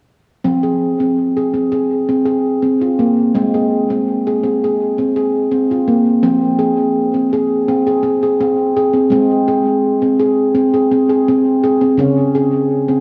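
A wet church reverb with a three-second tail blooms around a small-room ambience in this gentle, meditative world piece, cut from a longer work. A single handpan, stainless steel in tone, ringing and up front, plays arpeggios from 0.4 seconds with sharp finger strokes and a vintage, band-limited character, its notes smeared by a diffuse ambient delay. The harmony moves between F minor and A-flat before settling on a D-flat power chord at 12.0 seconds.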